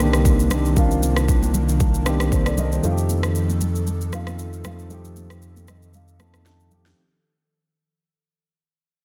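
A dark, boxy concert grand piano sits up front in this late-night, hypnotic amapiano excerpt at 116 BPM, comping over Cm9 and F7 before breaking into a fill from 5.4 seconds. A deep, round analog bass and an airy, breathy pad with chorus and sidechain pumping hold the low and middle ground, while a produced afro-pop kit with a deep kick, a sharp, softly clipped snare, rim click and shaker drives a swung 16th-note feel alongside very quiet, damped high-tuned congas. The dense, heavily limited mix carries light reverb, fades out across its seven seconds, and closes on a drum fill at 6.5 seconds.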